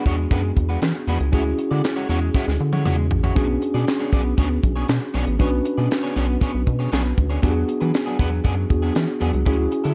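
A mellow tine electric piano and a slightly broken-up, fingered electric guitar with subtle chorus open this slick, danceable early-eighties boogie funk excerpt, joined at 0.1 seconds by a rubbery, bouncy square bass with a resonant filter pluck and a tight, dry drum kit of handclaps, hi-hat, kick, high-tuned snare and toms that plays a fill at 2.3 seconds, the bass and drums sitting up front in a small, dark-sounding room as the chords move from E9 through Dmaj9#11 and Bm69 back to E9.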